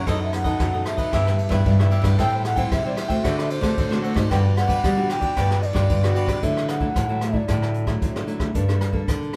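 Recorded live by a band in one large studio room with a moderate reverb, this short cut from a longer samba and choro piece has a natural sound. It moves at a joyful, lively 113 BPM in a straight 4/4 in G major. An airy, close-miked bansuri carries the melody with vibrato and tongued notes. A fingerpicked classical nylon-string guitar sits up front in the accompaniment, a second nylon-string guitar plays the bass line, and a crisp, warm, picked cavaquinho adds accompaniment until 6.4 seconds. A jazz kit played with brushes keeps time on hi-hat, ride, rim click and a boomy kick, its cymbals dark in tone. The harmony starts on B7/F# and moves through Em/G, Am7 and D7 to Gmaj7, then shifts to a new section at 6.4 seconds on Dadd9, with the bansuri dropping out at 7.9 seconds before the close on Gmadd9.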